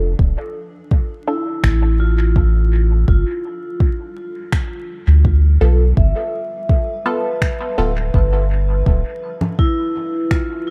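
Ambient dub with a spacious, meditative mood, moving at an unhurried pace in a straight four-time feel, cut from a longer piece. A cloudy, granular pad sits far in the background with its own reverb, fading in across the whole passage, while a deep, round sub bass holds the low end up front until 9.0 seconds and a soft electronic kick pulses close by. Muted, nasal chord stabs with a resonant filter pluck pass through phaser and dub echo, dropping out at 7.9 seconds. From 1.3 seconds a metallic, ringing vibraphone with medium mallets and slow motor vibrato plays arpeggios through a low-pass filter and tape echo, a filter sweep running across its part, joined moments later by electronic finger snaps and congas trailing dub echo. Vinyl crackle hovers throughout as the harmony drifts from D minor to G7 and settles back on D minor.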